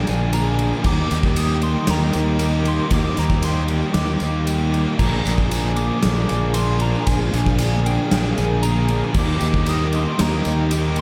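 Dreamy and hazy, this 11-second excerpt from a longer piece sits in shoegaze and dream pop territory, moving at 116 BPM in a straight 4/4 over a Bb7 to Ebmaj7 progression. A fuzz-drenched, fingered electric bass sits up front and punchy, while a gated 80s drum kit joins at 0.1 seconds with a punchy kick, medium-tuned snare, bright crash and ride cymbals, and a polished, airy stone-room sheen. Behind them, three overdriven guitars play riffs: one biting guitar in the background trails a reverse reverb, and two dark, very quiet picked guitars, one compressed and one double-tracked, thicken the wall. Above it all, a round, gentle FM synth lead carries the melody with fast-attack, decaying, keys-like notes, colored by chorus, vibrato and analog delay. A thick, warbling, vintage sawtooth pad in detuned unison holds very quiet sustained chords, and a jingly tambourine sits close and faint, all bathed in a lush hall reverb that gives the mix its soaked, hazy glow.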